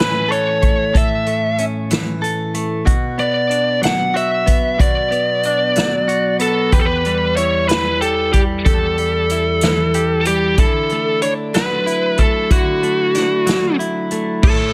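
Six-eight pop ballad at 62 BPM with a romantic, heartfelt mood: a bright, biting lead guitar with overdrive carries the melody over a clean, compressed, direct-recorded electric guitar washed in lush chorus, while a roomy acoustic drum kit played with bundle sticks adds dark cymbals, a punchy kick and a medium-tuned snare, all in a small room ambience as this excerpt moves through A, Bm, Em and Dadd9.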